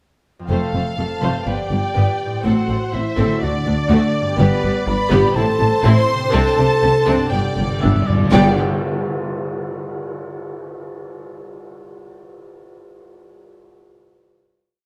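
Cinematic heroic adventure score in G major at 123 BPM, soaring and heroic, where a rich violin section carries the theme over lush violas, close cellos and double basses, a bright ringing harp, mellow distant horns, a distant flute and clear second violins doubling the tune at the octave, with a dark cymbal swell and tam-tam arriving at 4.4 seconds, soft round timpani from 7.3 seconds, a brief clear oboe, and a band accent at 8.3 seconds launching the final chord in a moderate scoring-stage reverb.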